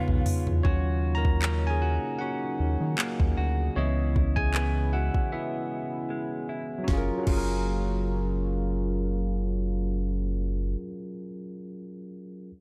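A dry mix opens this short cut from a longer contemporary R&B piece, romantic and tender in mood with a gentle swing. A drum fill leads in, and then a bell-like tine electric piano, bright and up front, takes a solo at 0.6 seconds while a filter sweep runs through the passage until 6.9 seconds. Beneath it, a clean electric guitar recorded direct plays compressed, picked arpeggios touched by subtle chorus and tape echo, and a shimmering, retro pulse-width pad holds dark sustained chords in the background with sidechain pumping. A round analog bass anchors the low end, deep and up front, alongside a produced electronic kit with a soft kick, fat snare, smooth hats, crash, toms and handclaps. A break arrives at 5.3 seconds, and the harmony moves through minor seventh chords before settling on an F# major seventh as the second section begins.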